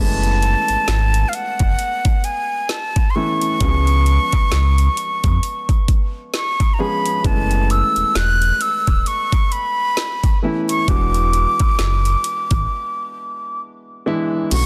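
Contemporary R&B at a slow 66 BPM with a swung 16th-note feel, this tender, dreamy passage from a longer piece is tuned to A4 = 435 Hz and moves through F#m11, C#7 and E7. A breathy, close-miked concert flute carries the melody up front with a straight tone, soft attack and a touch of delay, over an intimate grand piano whose action noise is audible and a deep, sine-like sub bass with an octave layer. A produced trap kit enters at 0.2 seconds with a knocking kick, woody snare, metallic hi-hats and crash, and a break arrives at 12.7 seconds, all within a dry, dense, heavily limited modern master.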